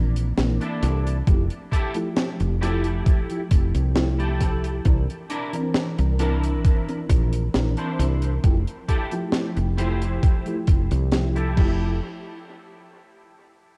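Dreamy and faded, this vaporwave fragment drifts at an unhurried straight four, cut from a longer piece and steeped in echo and cassette-tape haze. A soft, full-bodied FM electric piano carries the harmony between C9 and Fmaj9, its chorused tones fading into dub echo. Up front, a woody fretless bass growls in a dark, hollow register, its low-pass filter sweeping across the whole passage. A clean, picked electric guitar enters at 0.6 seconds with a bright riff that is chorused, filtered and thrown into echo. The deep reggae kit brings a dry, high-tuned snare with hi-hat and crash, while from 1.3 seconds a thumpy, overdriven electronic kick sits prominently forward with a small-room character, the ensemble falling away by 12.0 seconds.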